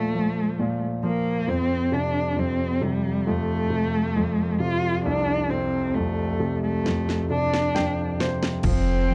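This short excerpt has a dry, close, 1970s-style studio sound touched with digital ambience, every part placed up front. It's a hopeful, emotional pop ballad in a straight 4/4, built on a Bb5 chord that moves to F. A single bowed cello carries the melody in a dark, expressive voice, with vibrato, portamento and a smooth top, while a warm, polished baby grand piano accompanies across a broad range and plays a fill from 7.3 seconds. An electronic, layered house drum kit enters at 6.9 seconds with a fill of punchy kick, cracking snare, toms and crash cymbal. At 8.6 seconds a deep, round sine sub bass arrives on a single sustained low note with a fast attack.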